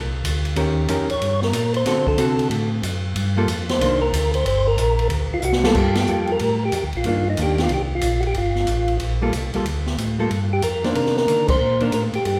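A percussive tonewheel organ carries the melody through a slow rotary speaker, its third-harmonic percussion giving each note a round, clean snap, and it enters at 1.1 seconds within a tonewheel organ solo that spans the opening 5.7 seconds of this smoky, bluesy soul jazz organ trio excerpt in G minor. The tempo is a brisk 185 BPM in 4/4 with a swung eighth-note feel, and a second, mellow tonewheel organ sits up front on the bass line, its key click audible as it also turns through a slow rotary speaker. An acoustic drum kit with dark cymbals, a high-tuned snare and a boomy kick enters at 0.2 seconds, and a clean, picked hollow-body electric guitar adds dusky accompaniment chords from 0.6 seconds. A drum fill leads into the second section at 5.7 seconds, where the harmony moves between Gm9 and Cm9, and the band hits accents at 5.9 and 11.4 seconds. A moderate recital hall reverb lends the trio a natural, roomy glow, as if heard in a church or concert hall.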